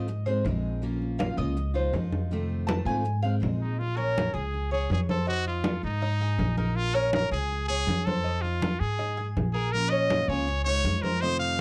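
A brilliant, up-front trumpet enters at 3.6 seconds and carries the melody with vibrato and scooped notes, its punchy, pop-style delivery sitting boldly on top of this danceable fragment of Cuban son and guajira in Bb minor. Before it arrives, the metallic, double-strung Cuban tres takes a featured turn, and it keeps picking arpeggios throughout, some strings doubled at the octave. A full-bodied dreadnought steel-string guitar adds picked accompaniment until 3.8 seconds, then returns at 9.7 seconds. Underneath, a woody, thumpy pizzicato upright bass sits up front, while low-tuned congas played with soft hands ring out with a compressed, saturated edge. The 161 BPM straight 4/4 groove moves through Bbm, Db, F7 and Ab changes, framed by a dark, warm production with moderate studio reverb.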